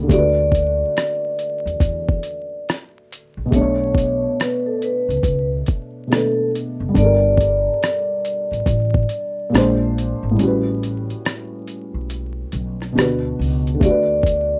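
Dreamy and cosy, this lo-fi hip hop passage, cut from a longer piece, moves at a relaxed 70 BPM in 4/4 with a swung sixteenth-note feel in D major. A felt-muted upright piano, soft and intimate behind a low-pass filter, carries the chords up front, moving from D6 through Bm9, Gmadd9 and Bb9 to A13 before settling back on D6. Beneath it, a woody pizzicato upright bass with steel strings holds down the low end. Above, a vibraphone played with medium mallets and the motor off rings out an airy, metallic melody, also rounded off by a low-pass filter. The sampler-style drum kit sits close in the mix, gritty and overdriven, with a thumpy kick, hi-hat and rim click. A break arrives at 10.4 seconds, and the rough home-demo mix is wrapped in light reverb and vinyl crackle.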